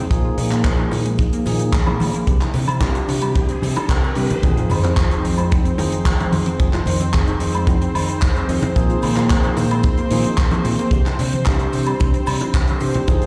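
Nu-disco at 111 BPM in F dorian, a groovy, cosmic excerpt cut from a longer piece, where a clean tine electric piano with dub echo and a very quiet, punchy sawtooth pluck playing arpeggios ride over a bright, envelope-filtered fingered bass, a dry acoustic kick, a tight funk kit with handclaps, hi-hat and woodblock, and maracas, congas and bongos tucked in the background. A background riser builds from 2.2 s into a sub drop and impact at 4.4 s, where a lush, warbling, detuned unison pad enters with chorus and sidechain pumping on sustained chords. The harmony cycles through Bb7sus4, Cadd9 and Fm7, and the whole mix sounds as if played on a big sound system in a bare room, with large studio reverb.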